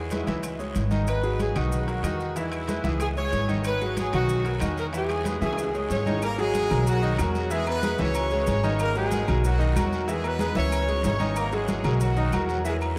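This salsa recording sits in a vast, echoing space, with a huge ambient reverb washing over the mix. The danceable, passionate groove rests on an up-front upright bass, dark and thumpy with gut strings, while a bright grand piano comps with long sustain and audible action noise that gives it an intimate feel. Behind them sits a full percussion bed: thick-skinned congas played with soft hands, ringing metal-shell timbales and agogo bells with a vintage, band-limited tone, a raspy guiro, grainy maracas, and dry, very quiet claves. A clear, punchy, tight horn section carries the melody with light vibrato until 5.9 seconds, when a brilliant, up-front horn ensemble takes over the tune. Meanwhile a drum fill from 5.4 seconds leads into the second section, which continues over a looping minor-key progression of C#m, G#m7, Bmaj7 and E, in a passage cut from a longer piece.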